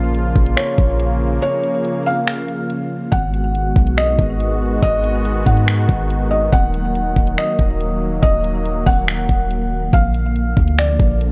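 A half-time 4/4 groove anchors this melancholic, spacious stretch of atmospheric cloud-rap hip hop, cut from a longer piece. The smooth R&B drum kit, arriving at 0.1 s, sits up front with a knocking kick, metallic hi-hats and finger snaps. Just as forward, a deep, boomy 808-style bass with a sine body, a noise layer and a fast attack that decays fills the low end. Above them, a sweeping resonant pad of detuned sawtooth tones holds sustained chords, evolving through a filter swell, with chorus and sidechain pumping giving it a bright, pulsing sheen, while a felt-muted upright piano carries the melody in a soft, intimate voice, its mellow tone and audible action noise trailed by digital delay. A break falls between 1.4 and 3.1 seconds, and the harmony moves from Bbm through Abm7 and Ebm to Bb, with digital ambience surrounding the whole mix.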